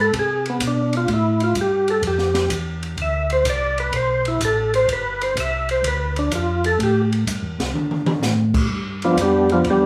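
A percussive tonewheel organ carries the melody up front, its full, lightly overdriven voice shaped by second-harmonic percussion, chorus vibrato and a slow rotary speaker, spanning F3 to E5 in a solo that runs the length of this short cut from a longer soul jazz organ trio piece. Beneath it, a second tonewheel organ plays the bass line from G1 to D3, mellow, round and clean, with audible key click and its own slow rotary spin, also placed up front. An acoustic open jazz drum kit sits lower in the mix, with dark cymbals, a high-tuned snare and a boomy kick, and it plays a fill from 7.7 to 8.2 seconds. The groove swings at 126 BPM in 4/4 with a soulful, swinging mood in G mixolydian, moving through chords such as A5, D5, G5 and Am7 before landing on G7 at 8.7 seconds as the section begins again. A wet club reverb gives the trio a small-room closeness.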